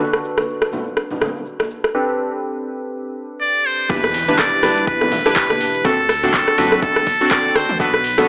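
A dry, gritty hardware recording with an AM radio tint carries this driving, spiritual afro house excerpt in E minor at 123 BPM, where round, wave-folded analog key stabs with chorus and sampler grit open alongside a grainy egg shaker, an overdriven deep house kit with metallic hats, handclaps, rim clicks and toms, and distant, soft-handed congas, before a brilliant, buzzy metal-muted trumpet takes the melody with analog delay at 3.4 seconds and the drop at 3.9 seconds brings in a rumbling, detuned saw bass and a deep, overdriven kick in the background, marked by a very quiet electronic impact.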